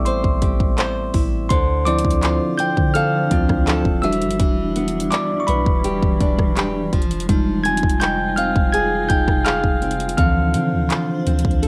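Lightly reverberant and moody, this late-night contemporary R&B excerpt in D dorian moves at 83 BPM in a straight 4/4, led by a bright, bell-like tine electric piano solo up front over fingerpicked nylon-string guitar arpeggios, a round, deep 808-style bass, a punchy pop drum kit of kick, metallic hi-hat, rim click and handclaps, and a blurred granular cloud pad with sidechain pumping that drifts in at 2.4 seconds beneath chords moving from Am7 through Dm7 and Em7 to Fm7 before returning to Dm7.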